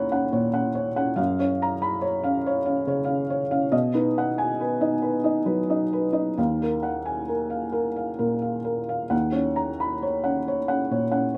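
A felt-muted upright piano opens alone on an Eb minor seventh chord, its tone soft, dark and a little boxy, sitting up front and intimate in a dry, open-air setting that carries little reverb. This short, wistful fragment of neoclassical minimalist piano, cut from a longer piece, moves in a lilting 6/8 with a freely breathing rubato feel. The harmony drifts from that opening chord through Gbmaj7 and B to an Ebmadd9, and the piano ranges from deep bass notes to high treble. A subtle slapback echo on the piano adds a faint doubled edge to each note. At 9.1 seconds the opening material and its Eb minor seventh return, leaving the reflective mood hanging as the fragment ends at 11.4 seconds.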